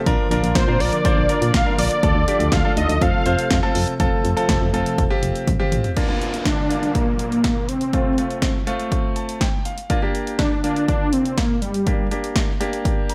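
A wistful yet upbeat synth-pop passage, cut from a longer piece, rides a punchy analog drum machine with gated reverb and a clear, intimate grand piano whose action noise is audible, while a thick, warbling unison lead with slapback echo carries the melody up front from 0.6 seconds. For the first six seconds a brassy, detuned sawtooth pad with chorus sits in the background over a round, dark FM bass, and both stop as a drum fill hands over to a sparser stretch at 6.0 seconds. There a faint electronic downlifter drifts behind the piano, which adds its own fills, all set in light digital ambience.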